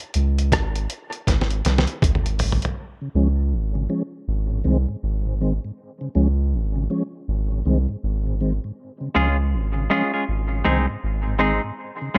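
A gritty, pitched-down sampler-style drum kit with a thumpy kick opens this hazy, spacious dub reggae excerpt at a swung 80 BPM in Db major, playing a break that ends in a fill as a deep, round sub bass settles in beneath it, before a mellow, flute-like tonewheel organ with chorus vibrato, slow rotary speaker and dub echo enters at 3.0 seconds and a bright, clean, picked semi-hollow electric guitar, also trailed by dub echo, joins at 9.1 seconds over an Ab–Db chord sway in light digital ambience.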